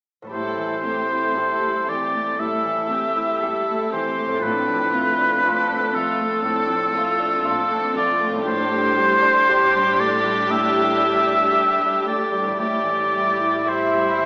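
Heard through a small-speaker sound yet bathed in the wet reverb of a church or concert hall, this moving, bittersweet cinematic fragment in A minor drifts at a rubato 59 BPM through Am7, Dm7/A, Gsus2/A and C6/A. An up-front, clear solo oboe with light vibrato carries a second line over a soft, floating sul tasto violin-section melody, while a dark, woody viola section and a present grand piano supply accompaniment. A distant cello section holds a low A in the background, and a ringing, fingerpicked concert harp spins arpeggios from 0.2 seconds.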